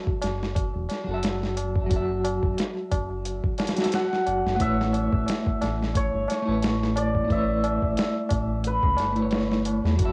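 A clean, picked electric guitar opens this smoky, dark trip hop excerpt at 89 BPM, its tremolo-shaded accompaniment carrying 12-bit sampler grit, cassette tape wear and tape echo over a move from F#m7 to Aadd9. Almost at once a dusty soul sampler-style drum kit arrives up front, compressed and overdriven with a thumpy kick, medium-tuned snare and hi-hat, laced with studio reverb and a gritty cassette sheen, while a low-tuned tabla rings close and dry beneath it. A round, deep analog bass enters at 0.2 seconds, its detuned blend of sawtooth, sine and triangle tones sustained and darkened by transformer saturation. At 3.9 seconds a hammered cimbalom takes the melody between B4 and F#5, shimmering through cassette tape and tape echo. The lightly reverberant home-cassette sound and a gentle 16th-note swing give the groove a hazy, late-night feel.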